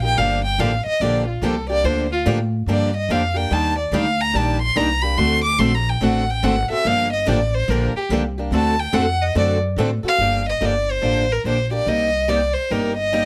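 Closely miked with a light reverb, this fiery, bittersweet slice of acoustic string swing in G minor moves at 144 BPM in a swung 4/4. A warm, bowed violin takes an expressive solo up front until 10.2 seconds, singing with vibrato and portamento, while a woody, thumpy gut-string upright bass is plucked pizzicato beneath it. Two bright, picked acoustic guitars accompany: a boxy swing-style guitar, and a steel-string guitar with fresh strings and audible finger squeak that stops at 9.9 seconds.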